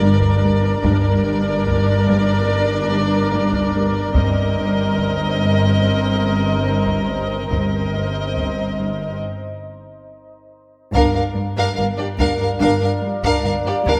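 This cinematic suspense score excerpt moves at 72 BPM in 4/4 in G minor, with an ominous, tense mood. A bowed violin section carries a focused, vibrato-rich melody high above a smooth, even viola section. A deep, moody pad with chorus and its own reverb holds dark sustained chords. Low down, a distant chamber cello section repeats an expressive riff. Beneath it, a close double bass section and a symphonic cello section sit in the background on a low G. Heavy-stick taiko drums hit in a small-room sound, and the harmony shifts from G minor to Cm7 over G. After a break at 9.2 s and a drum fill at 10.1 s, a second violin line enters at 10.9 s as the chord turns to Gm7, all bathed in the long, wet tail of a scoring stage.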